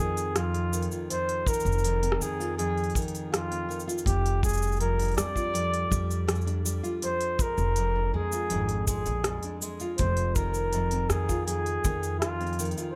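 A mellow, distant flugelhorn carries the melody with light vibrato, a soft attack and a touch of delay, over full-bodied fingerpicked arpeggios on nylon-string guitar and a woody, dark pizzicato upright bass, opening this wistful, autumnal folktronica excerpt. A minimal electronic kit of clicky hats, cabasa and rim click, overdriven and re-recorded in a small room, joins almost at once, and a tight acoustic kick with a rolled-off top enters at 1.5 seconds. The chords move from Fm7 through Fsus2 and Bb7/F before returning to Fm7, all within a soft studio ambience.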